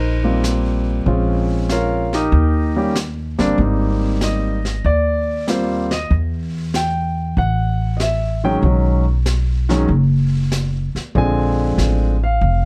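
Lightly reverberant and intimate, this relaxed, swinging jazz piano trio excerpt in Eb major at 95 BPM sets a clear, polished concert grand with audible action noise and long sustain up front on the melody, over a woody, thumpy pizzicato upright bass on gut strings, while a vintage brush kit with a high-tuned snare, punchy kick, hi-hat and a rolled-off top joins at 0.4 seconds, and the harmony moves from Eb6 through Abmaj9, Em and B6 to Bb7.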